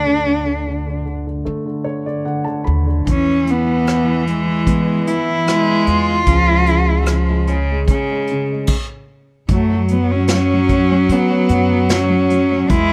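A bowed cello carries the melody up front in this intimate, reflective acoustic folk-pop ballad, its soft attack, expressive vibrato and sliding portamento giving the line a warm, smooth quality. Beneath it, an upright piano with a woody, natural tone and audible action noise plays the accompaniment, while a pizzicato upright bass with gut strings adds a dark, thumpy low end. At 3.1 seconds a second cello joins with a brighter, biting, nasal voice, light vibrato and an airy bow, alongside a vintage drum kit played with brushes, its dark cymbals, punchy kick, medium-tuned snare and rolled-off top heard in a studio room. The piece moves at a slow 75 BPM in a straight 4/4 in F# minor, with a brief stop at 8.7 seconds before a new section opens at 9.5 seconds. The recording is dry, with little reverb, and this short passage is cut from a longer piece.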